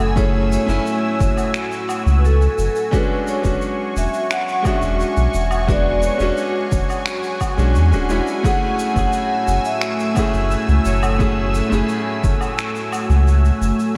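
The round, up-front analog bass with its tube saturation anchors this relaxed sunset chillout excerpt in F# minor at 87 BPM, where a metallic, ringing vibraphone with fast motor vibrato carries the melody over a clear concert grand piano, a lush detuned unison pad with chorus and phaser, a punchy electronic kick, and a shaker, woodblock and finger snaps, all floating in a dreamy hall reverb as the chords move from F#m9 to E13 at 2.9 seconds and back to F#m9 at 8.4 seconds.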